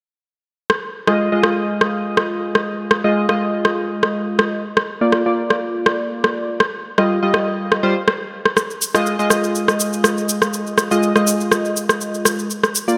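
A moderate, lush hall reverb surrounds this driving, earthy afro house excerpt, lending the close, up-front parts a sense of space. At 122 BPM in 4/4 with a light 54% swing on the sixteenths, an electronic rim click and shaker opens the groove at 0.7 s, electronic and produced, with its own studio reverb. At 1.1 s, warm analog keys enter with stabs of round pulse-wave and sawtooth tone, fast in attack and decaying, colored by chorus, delay and an evolving low-pass filter sweep. Set in F minor and ranging from G3 to Eb5, the stabs carry the harmony from Fm7 to Bb, then to Ebadd9, before returning to Fm7 at 8.6 s. Both parts play together through to 13.0 s, carrying the single section to the end of the excerpt.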